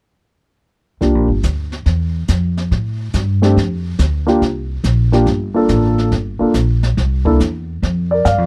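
Sophisticated and swinging, this brief cut from a longer jazz piano trio piece moves at 141 BPM in 4/4 with a swung eighth-note feel, as an up-front concert grand with deep bass carries the melody over chords from C7sus4 and F6 to Fsus2, while a woody, thumpy upright bass on gut strings and an airy, polished brush kit with a high-tuned snare and boomy kick fill out a dry, close 1970s-style studio sound from 1.0 to 8.5 seconds.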